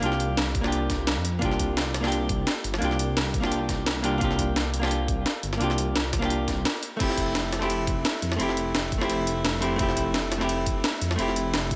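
The hollow-body jazz guitar sits up front, its clean, picked tone trailed by a diffuse ambient delay as it carries the accompaniment in this uplifting, lush liquid drum and bass excerpt at 172 BPM in F major, moving from C7sus4 to Fmaj9 at 7.0 seconds. Beneath it, a dark detuned saw bass rumbles with a saturated, beating low end, while a gritty, pitched-up breakbeat kit with a high-tuned snare, hi-hat, ride and crash drives a gentle 16th-note swing, joined at 0.5 seconds by a knocking, layered electronic kick. The dreamy mix is soaked in plate reverb.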